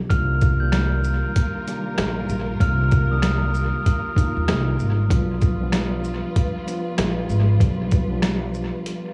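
Swung 16ths at 96 BPM in 4/4 drive this dark, moody boom-bap hip-hop cut from a longer piece, set in C minor. The sampler-style drum kit sits up front, compressed, pitched down and gritty, with a thumpy kick, a medium-tuned snare, rim click, hi-hat and shaker, all re-recorded in a large room and touched with tape echo. A woody pizzicato upright bass on steel strings shares the front of the mix, while a mellow tine electric piano, heard through its built-in speakers with cassette tape colour and tape echo, carries the harmony from Cm11 to G7 at 5.1 seconds. A soft, bell-like glockenspiel played with rubber mallets rings out a high melody in a boxy small room until 4.0 seconds, and a lush bowed string section adds focused, vibrato-rich stabs with a smooth top. The echo-heavy mix and small room reverb give the whole a hazy, intimate feel, with a break arriving at 8.9 seconds.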